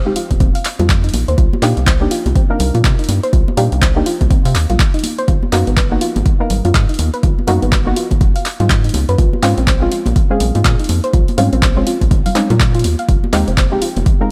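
A muted, detuned dub chord stab and a rubbery, hollow square bass open this moody, hypnotic deep house excerpt in F minor, moving at 123 BPM in 4/4 with a 61% swing on the sixteenths. Within a fraction of a second a soft, round pluck arrives with arpeggios colored by chorus and delay. A deep, overdriven electronic kick sits up front and loudest, joined by a dry analog drum machine carrying punchy handclaps and hi-hat, while high-tuned, ringing congas played with soft hands sit in the background. The bass and the pluck both carry sidechain pumping, and the stabs carry their own chorus and delay. The chords move from Fm7 through Cm7, Abm7 and Bbm7 before returning to Fm7 at 13.1 seconds, all in a close, dry space with little reverb.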